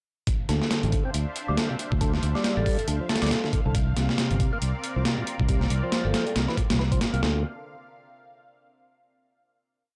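Gritty and funky, this short breakbeat piece in D minor moves at 138 BPM with a swung sixteenth-note feel, running from a drop straight into a closing chord at 7.2 seconds. A compressed, overdriven sampler-style kit sits up front with a thumpy kick, medium-tuned snare and hi-hat, playing a looped, edited breakbeat that sounds re-recorded in a small room. Beside it, a fingered electric bass plays a dotted-rhythm line, direct and amped, while a fat, lightly overdriven tonewheel organ repeats a 32-step percussive riff through a slow rotary speaker and analog delay. Underneath, a lush, thick sawtooth pad holds sustained chords, moving from Dm9 to C9sus4, with chorus, phaser and sidechain pumping adding motion to its bright, detuned body. A metallic, ringing vibraphone appears briefly in the background around 2.6 seconds and again near 6.0 seconds, its airy tone squeezed through an AM-radio filter and delay. 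The dry recording has a cassette-tape grit and very little reverb.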